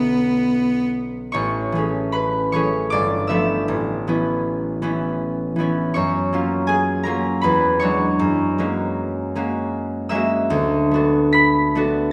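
A cello and a concert harp sound together at the start of this luminous, pastoral fragment of an impressionist classical duo. The cello's melody is brief: a single player bows a soft-attacked, airy B3 sul tasto with light vibrato, intimate and close, and it falls silent by 0.8 s. The fingerpicked harp carries on alone until 12.1 s, its bright, ringing acoustic tone spanning G1 to B6 and sitting up front. The music moves in a rubato three-beat feel with uneven beats, drifting through colourful chords such as Amaj7, G9, F#maj7 and E9 before settling on D69. A wet stone room reverb gives the duo a resonant, glowing space.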